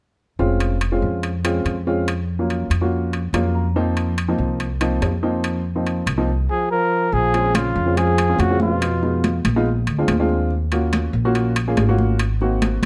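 A dark, breathy trumpet carries the melody up front in this fiery, sultry Afro-Cuban jazz excerpt in Bb minor at 142 BPM, entering at 6.5 seconds alongside a mellow, whispered trombone second line. Underneath, a woody pizzicato upright bass and an intimate baby grand piano with audible action noise drive the straight 4/4 groove, the piano taking a short fill at 3.1 seconds, while ringing metal-shell timbales sit close and dry. Damped, high-tuned congas join in the background at 7.1 seconds as the harmony moves through Bbm7, Fm7b5 and Bb7, all within a dark, warm production touched by light reverb.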